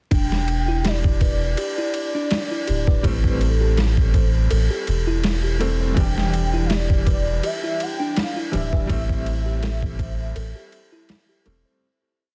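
A gritty, overdriven looped breakbeat with edits, built from a thumpy kick, a medium-tuned snare and a ride cymbal, sets a lightly swung 82 BPM trip hop groove in E minor, with a deep, round dub sub bass up front beneath it. Over the alternating Em7 and Am7 chords, a breathy sine lead wanders freely with vibrato and gliding portamento through chorus and dub echo, while a delicate, tinkling music box repeats a 16-step arpeggio roughened by vintage 12-bit sampler grit and tape echo. A woody upright piano joins at 3.0 s with close-voiced held chords and syncopated pushes, colored by tremolo and tape echo, before the brooding, dark piece fades out from 7.9 s in a dry, dense, heavily limited mix dusted with vinyl crackle.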